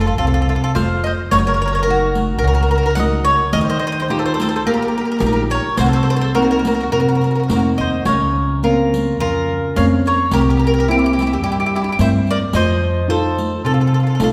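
A wet scoring-stage reverb with a 1.8-second tail places this Italian serenade at some distance, as if heard from further back in the room. Two mandolins lead with double-string picking: the woody melody line sits up front, and a rounder, softer second mandolin shadows it a little lower. Beneath them a small, dark nylon-string guitar fingerpicks the accompaniment, while a thumpy pizzicato upright bass with steel strings anchors the low end. A riq joins at 0.8 seconds, adding dark jingles and hard-handed strokes. At 107 BPM in 4/4 with a light swing on the eighths, the 14.3-second fragment feels wistful and passionate as the harmony moves from F through Gb6, Ebadd9, Cm7b5 and Bbmadd9/Db to a closing C7 and F7.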